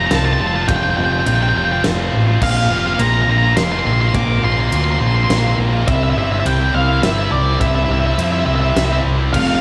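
A growling, fingered electric bass sits up front with a warm overdriven edge, anchoring this soaring, cinematic post-rock excerpt in a steady 3/4 with a straight feel. Above it, an octave-fuzz lead guitar carries the melody between D5 and D6, its dark, picked tone thickened by distortion and trailed by tape echo. A tight, bright distorted guitar plays a picked riff underneath, while a very quiet, airy pad of breathy, detuned layers with a slow attack and long release sustains chords shimmering with chorus. A huge arena drum kit sits in the background with a hall sound, bright cymbals, a fat snare and a punchy kick, and the harmony moves from Fadd9 to Bbsus2 and then C. At 9.3 seconds a second, warm overdriven electric guitar joins with its own picked riff, all within a small room ambience.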